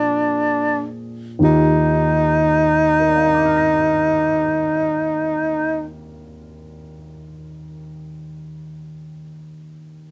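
Jazz ballad excerpt in Eb major at a slow 39 BPM with a swung eighth-note feel, intimate and tender, where a breathy tenor saxophone carries the solo melody up front with vibrato, soft attacks and scooped notes until 5.9 seconds, over a dark, woody, boxy upright piano accompaniment with long sustain that continues to 10.1 seconds, the opening slowing down on a Bb7 chord before moving to Ebmaj7 at 1.4 seconds, captured in a dry, close 1970s-style studio sound with light reverb.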